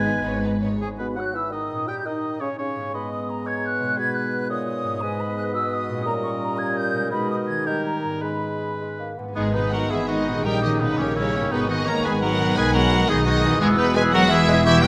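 This cheerful, lively romantic orchestral movement in 6/8, played with rubato, opens with a brief statement from the full string sections before the woodwinds carry on. A clear oboe, airy, hollow flutes and a punchy clarinet in the background weave second lines over a mellow bassoon, dark, distant French horns holding chords, and bright, ringing harp arpeggios. At 9.4 seconds the lush, vibrato-rich violins return with the melody, joined by second violins, violas, a rich cello section and double basses on the bass, a very quiet trombone section sustaining chords and a vintage-toned trumpet adding stabs, all set in a moderate scoring-stage reverb in a dramatic passage cut from a longer piece.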